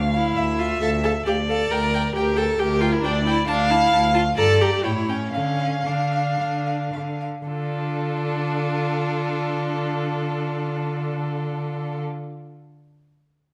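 A quick, urgent and stormy classical-period string quartet movement, cut from a longer piece, is played with rubato and slows between 2.6 and 7.5 seconds, as a distant, smooth violin with vibrato carries the melody over a rich, focused second violin, a close, clear viola accompaniment and an up-front cello bass with light vibrato, each part bowed by a single player in a reverberant recital hall.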